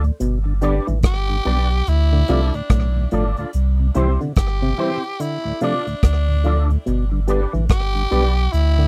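Roots reggae at a laid-back 72 BPM in 4/4 with a swung sixteenth feel, this dry, close 1970s-style studio excerpt moves through G, Dm, C, Dm and back to G. Up front, a soft brush kit with a tight kick, hi-hat and rim click sits beside a deep, round sub bass. Around them, a twangy envelope-filtered electric guitar with chorus and tape echo, a dark tonewheel organ through a slow rotary speaker, worn, slightly detuned upright piano stabs in the background and stringy muted clav arpeggios through auto-wah fill the accompaniment, while a raspy, gritty tenor saxophone takes the melody from 1.1 s with vibrato and tape echo.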